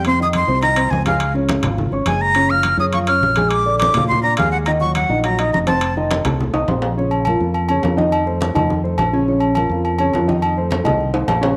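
A driving salsa groove in straight 4/4 at 208 BPM opens this fiery latin excerpt, with fingered electric bass and timbales and agogo bells in place from the start and congas joining at 0.1 s. The bass is round, dark and punchy, while the timbales and agogo bells ring with a compressed, saturated metal-shell edge, and the hard-hand congas sit ringing in the background. A breathy, bright jazz flute carries the melody up front from 0.0 to 5.9 s, its crisp, chiffy attack and reedy vibrato ranging from F5 to F6. Alongside it, a dark, mellow and somewhat boxy grand piano comps up front through a progression of Fm7, Db, Gbmaj7, Bb7, Ebm and F7 before the music settles into Bb harmonic minor at 7.0 s, alternating Bbm and F7. Drum fills mark 6.5 s and the close at 11.1 s, and a moderate echo-chamber reverb with small-room ambience wraps the ensemble.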